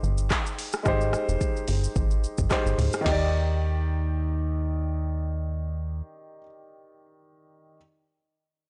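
Sunny and joyful, this short excerpt cut from a longer afrobeats piece moves at 109 BPM in 4/4 with a light sixteenth-note swing, centered in E-flat major. An electronic, produced afro-pop drum kit sits up front with a deep kick, woody snare and metallic hats, alongside crash cymbal, handclaps, rim clicks, shaker and toms, and it drops out at 3.2 seconds. A plucky analog bass, punchy and funky with a dark sawtooth and pulse-wave tone, filter pluck, a moving notch and fast-attack decaying notes, carries the low end until 6.0 seconds. A polished, present baby grand piano with a warm character plays accompaniment throughout, ringing on alone to the end at 7.8 seconds. The harmony shifts from Abmaj7 to Ebmaj7 as the second section arrives at 3.1 seconds, and the whole recording has a blown-out, overdriven digital ambience with the top end rolled off, lending it a gritty, saturated sheen.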